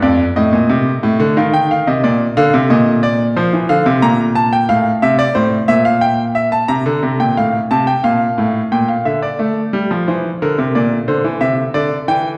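A bright grand piano plays alone throughout this contemplative, serious baroque-style two-part invention in Bb major, moving at 90 BPM in a straight 4/4. Its brilliant, natural tone has a short sustain and sits up front, spanning F2 to Bb5. A reverberant recital hall surrounds it with a 1.7-second decay, giving the impression of hearing it from further back in the room. The opening section moves between Bb, F7, F/A and C7/Bb, and a second section from 8.7 seconds turns toward Gm/Bb, Bbadd9 and Cadd9. The 12.4-second passage is cut from a longer piece.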